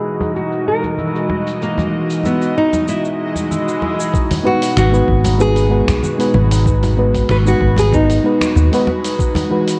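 A straight 4/4 groove starts at 0.2 s, with a gritty, tape-warm sampler-style kit of cabasa, finger snaps and hi-hat joined by close, dry congas struck with hard hands in the background. This smooth, sunny sunset chillout fragment, cut from a longer piece, opens on a filter sweep over an airy, breathy, detuned pad and a mellow, chorused FM electric piano. A bright, fingerpicked nylon-string guitar carries the melody while a ringing concert harp plays arpeggios, and the guitar, piano and harp all carry tape echo and shimmer reverb. After a faint electronic swell, a thumpy, compressed electronic kick enters at 4.1 s as the harmony moves from Emaj9 to G#m7. A round, dark hollow-body fingered bass steps up front at 4.8 s with tube saturation. The whole mix has a worn, warbling cassette character with pitch drift and a low-pass filter, set in a moderate recital hall ambience, before Emaj9 returns near the end.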